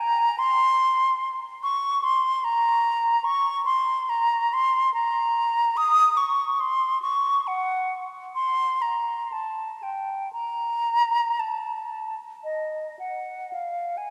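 This classical excerpt is a mournful, meditative solo for unaccompanied silver concert flute in a free, expressive 3/4 with rubato phrasing. The flute sits up front with an airy, metallic tone, crisp attacks and vibrato, playing from 0.0 to 14.1 seconds. A long, wet church reverb gives the line a spacious, contemplative halo.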